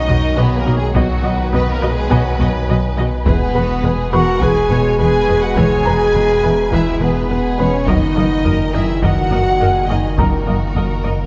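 A wet concert-hall reverb wraps this short cut from a hybrid orchestral and electronic film score, giving it a futuristic, tense atmosphere. The French horn section sits most forward, holding sustained chords with a smooth top and soft attack, while a tight, bright trombone section supports them from the background. Two violin sections carry the upper lines: one a soft-attacked, expressive melody, the other a lush, distant second line. Beneath them, a dark viola section accompanies, and a woody cello section doubles the bass with a double bass section, reinforced by a deep, thick, saturated sine sub bass. Threaded through are very quiet arpeggios from a squelchy, ring-modulated blip pluck with phaser, a mellow felt-muted upright piano with digital delay, and a very quiet taiko ensemble struck with hard sticks in a small room. The harmony moves from B to E at 3.3 seconds and settles on D#m/F# at 7.9 seconds.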